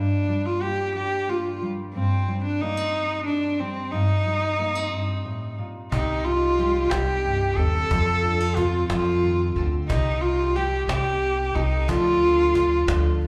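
A nasal, airy-bowed cello with slapback echo sings a yearning, bittersweet melody over a full-bodied fingerpicked steel-string guitar in this slow 60 BPM, 6/8 indie folk piece, which builds at 5.9 seconds as a dark, thumpy pizzicato upright bass, a woody cajon with faint snares and a quieter picked steel-string guitar with finger squeak join, and at 9.9 seconds the fingerpicked guitar stops as a mellow, round mandolin adds background arpeggios through analog delay, with club reverb lending the sound of a live gig heard through a venue's PA.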